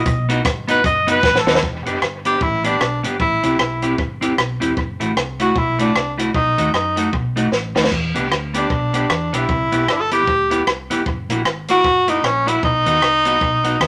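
A moderate studio reverb gives this short ska excerpt a lively but contained room sound, with the drums and horns placed up front. At a swung 153 BPM in E minor, the mood is energetic and mischievous. A punchy, vintage-toned trumpet with vibrato plays a solo over the opening until 1.6 s, and a clear tenor saxophone with light vibrato takes over the melody from 2.3 s. Underneath, a dark, round hollow-body electric bass and a clean, picked electric guitar carry the harmony through Em7, Am7, F#m7b5 and B7, then Em7, Cmaj7 and F#7, resolving on B. The dry cocktail kit pairs a high-tuned snare and punchy kick with dark cymbals, hi-hat and rim clicks, and it plays a short fill near 7.5 s. Dub echo trails both the drums and the guitar.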